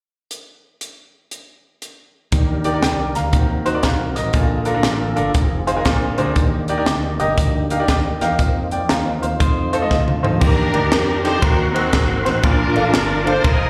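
Uptempo gospel with a swung, jubilant lift, heard live through a venue's PA in a recital hall, in a cut from a longer piece. Crisp fusion drums with a high-tuned snare and punchy kick open alone. At 2.3 seconds they are joined by a bright, woody upright piano with slapback echo, a growly fingered electric bass, and a lightly overdriven tonewheel organ with key click and a slow rotary speaker sitting in the background, while a clean, picked electric guitar adds a brief second line around a drum fill at 9.9 seconds. From 10.4 seconds a lush, bowed string section takes the melody up front with vibrato and portamento, carrying the uplifting mood to the end.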